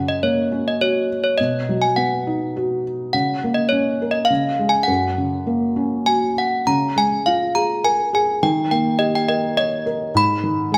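Gentle and innocent, this short children's lullaby sways in 3/4 at 103 BPM in F# major, tuned to A4 = 443 Hz and drawn from a longer piece. Up-front desk bells carry the melody with a clear, clanky ring that sits slightly out of tune, while a felt-muted upright piano gives dark, mellow accompaniment through thick felt, its action noise audible and intimate. Both play throughout, bathed in a wet recital hall reverb, and a new section begins at 6.7 seconds.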